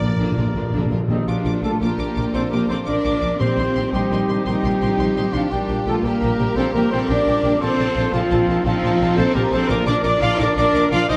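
A close, focused cello section anchors this heroic, soaring cinematic passage in Bb major at 114 BPM in 12/8, cut from a longer piece, with lush symphonic violins carrying the melody over a second violin line, intense violas, distant double basses on a low Bb, dark trombones and mellow French horns holding sustained chords, vintage-toned trumpet stabs, ringing harp arpeggios, and round timpani that open with a fill, drop out at 3.9 seconds and return at 9.7, while a bright clarinet and airy, hollow flutes join on very quiet second lines at 1.1 seconds, the orchestra set in a wet scoring-stage reverb.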